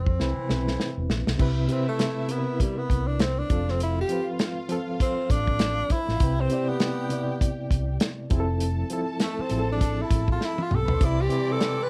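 A breathy, close-miked tenor saxophone with subtone and vibrato carries the melody and stretches into a solo from 1.4 seconds in this lush 1970s-style soul excerpt, backed by a reedy electric piano with fast tremolo, a round, tube-saturated hollow-body bass, an up-front small-room drum kit with a tight kick, rolled-off top and brief fills, a smooth bowed violin section entering at 1.4 seconds, and clear horn stabs at the opening and again from 11.0 seconds, set in light reverb within a dark, warm production.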